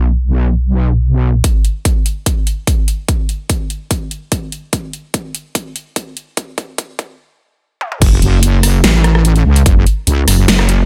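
A saturated, detuned wobble bass in F# minor opens this heavy, chaotic half-time dubstep excerpt at 146 BPM, thick with chorus and overdrive, before falling away at 1.4 seconds as a punchy electronic kick and a big-room kit with a huge snare and metallic hats drive a build-up under a filter sweep, with drum fills and a brief stop. At 8.0 seconds the bass slams back in for the drop, resonant and up front, while the dry, close mix keeps every hit hard and immediate.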